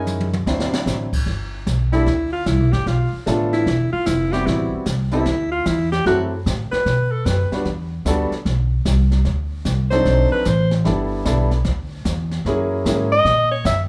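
A clear, punchy, forceful alto saxophone with vibrato sits up front and takes a jazz solo from 1.3 seconds in this swinging small-group swing and bop excerpt, cut from a longer piece. A natural-sounding baby grand piano comps beneath it while a woody, thumpy pizzicato upright bass anchors the low end, and a brushed drum kit with dark cymbals, a high-tuned snare and a boomy kick opens with a short fill at 0.1 seconds. The band plays live together in one large studio with moderate reverb, giving the whole a warm, close, in-the-room feel.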